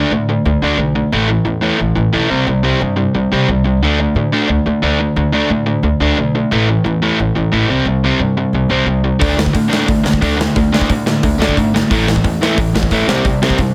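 Punk rock at a brisk 178 BPM in straight 4/4, this rowdy, energetic passage is cut from a longer piece and driven by a picked, overdriven semi-hollow electric guitar that sits up front with a warm, hollow-body tone. From the first moment the guitar's riff cycles through D5, A5 and C5 power chords, joined almost at once by a thumpy pizzicato upright bass whose woody, dark steel strings anchor the low end. At 9.2 seconds the band fills out as a second picked electric guitar, biting and overdriven, enters in the background alongside a big rock drum kit. The acoustic drums bring a punchy kick, a medium-tuned snare and hi-hat, placed up front with a big-room presence. The overall mix stays dry, letting the grit of the guitars and the thump of the bass carry the raw energy through to the end at 13.7 seconds.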